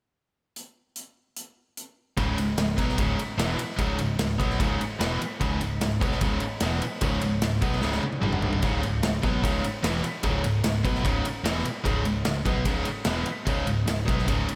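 Driving straight 4/4 drums from a big, up-front acoustic kit with a punchy kick and medium-tuned snare open this anthemic, energetic hard rock clip alone at 0.6 seconds, before a bright, overdriven stack guitar with spring reverb, a scooped high-gain distorted guitar and a dark, growly picked bass crash in at 2.2 seconds on Db5 power chords, shifting briefly to G5 around a drum fill at 7.8 seconds, all set in a lush hall reverb that gives a big arena sound.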